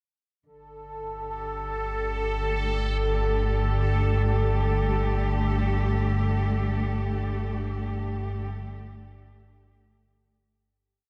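A chamber cello section fades in at 0.5 seconds with soft, bowed sustained chords on Gsus2, its vibrato and portamento giving an expressive edge to this unsettling, ominous dark ambient drone piece in free time. Almost at once a bubbling, detuned sawtooth texture holds a high resonant note that slowly fades through random filter steps and chorus, and at 1.4 seconds a deep, rumbling, nasal drone with ring modulation rises up front beneath them. Everything is bathed in a huge ambient reverb, and the whole piece fades out from 5.5 seconds, with the drone lingering until 10.6 seconds.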